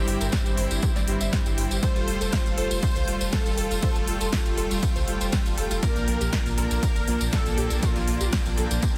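A punchy, overdriven electronic kick, re-recorded in a large room, anchors this bittersweet, emotional progressive house excerpt at 120 BPM in 4/4, alongside a layered big-room kit of crisp hats, ride and snare and a jingly acoustic tambourine. Over a deep, thick saturated sub bass, a soft supersaw plays smooth, detuned stabs colored by cassette tape, while a bold, wave-folded unison lead with vibrato carries the melody between F4 and C5. Lush plucked arpeggios and distant, bright symphonic strings hold the harmony through C/G, Fadd9 and Bb; the lead, plucks, supersaw, strings and bass all carry sidechain pumping, and a very quiet reversed granular texture adds a dreamy shimmer to the dense, heavily limited mix.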